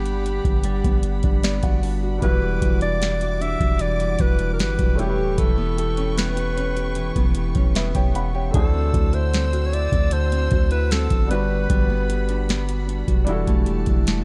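A dry, dark mix opens this late-night contemporary R&B excerpt in E minor at 76 BPM, where a booming analog drum machine with a deep kick, crisp snare, metallic hats and gritty 12-bit sampler texture sits up front beside a long, sine-toned 808-style bass. A mellow alto saxophone carries the longing, jazz-style melody with light vibrato, scooped notes and a tape echo until 12.8 seconds, while a fingerpicked nylon-string guitar adds echoed arpeggios. A present baby grand piano accompanies, with a fill from 1.0 to 2.2 seconds, and an intimate, softly bowed sul tasto string section holds warm chords through a Gmaj7, Em9, A9 and D9 progression.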